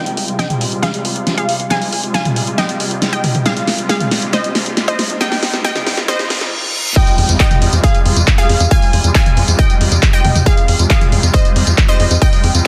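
Uplifting trance at 137 BPM in F minor, tuned to A4 = 435 Hz, this driving, soaring excerpt from a longer piece opens on a filter-swept build-up over an Fmadd9 chord, with a bright, lush detuned unison pluck carrying the melody, a catchy square-wave lead with vibrato sitting in the background as a second line, and an evolving, soft-attack supersaw swell holding sustained chords, all three pumping with sidechain. A tight, sawtooth sequencer bass on F2 and a big-room drum kit with a huge snare, crash, claps, hi-hat, tambourine and tom fill drive the rise, while a very quiet riser and reverse cymbal lead toward an impact. At 7.0 seconds the drop arrives with a punchy, up-front electronic kick, all under light reverb and a dense, heavily limited modern master.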